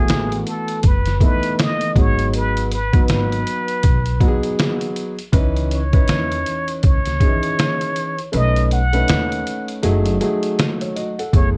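A breathy, whispered plunger-muted trumpet with wah-wah and vibrato carries the melody over an intimate, vintage upright piano with audible action noise, a dark, woody pizzicato upright bass and a gritty, pitched-down, sampler-style drum kit up front whose thumpy kick drops out at 8.3 seconds, together forming this cool, mellow, swung jazz-hop fragment at 80 BPM in F# dorian, set in light reverb with a faint mains hum.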